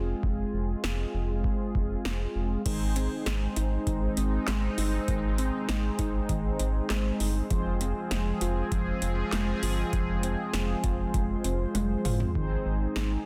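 A straight 4/4 analog drum-machine groove with a deep kick, punchy snare, metallic hats, handclaps and overdrive drives this bright, wistful synth-pop excerpt, alongside an up-front rubbery, nasal square bass and dark, brassy synth brass with chorus that sound from the very start, before an evolving, resonant pad and a soft, round pluck playing delayed arpeggios in the background enter at 2.7 seconds as the harmony moves between Fm and Ab, with a drum fill at 11.7 seconds, all under light reverb in a dense, heavily limited modern mix.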